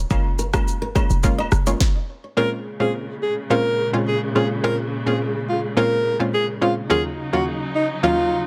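Afrobeats at 106 BPM in Bb minor, hypnotic and sultry, this excerpt opens with a punchy, tight 808-style bass, an electronic afro-pop drum kit with a deep kick, a sharp soft-clipped snare, rim click and shaker, band-limited vintage agogo bells, and a fingerpicked flamenco guitar riff with audible finger squeak and delay, all over a round, detuned analog pluck with chorus that carries through the piece; after a brief stop, a breathy alto saxophone solo with vibrato and delay and an expressive bowed string section with portamento and sidechain pumping enter at 2.4 seconds, moving through Bbm7 and Ebm7 in a dense, heavily limited modern master.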